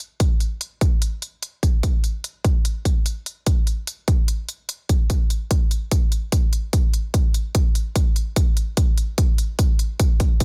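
Dubstep in a heavy, aggressive half-time feel, this excerpt pairs crisp, layered electronic hi-hats with a punchy, up-front electronic kick that arrives at 0.2 seconds, both carrying a tape-warm, small-room ambience within a dense, heavily limited modern master, before a build-up from 5.1 seconds leads into a drum fill at 8.4 seconds.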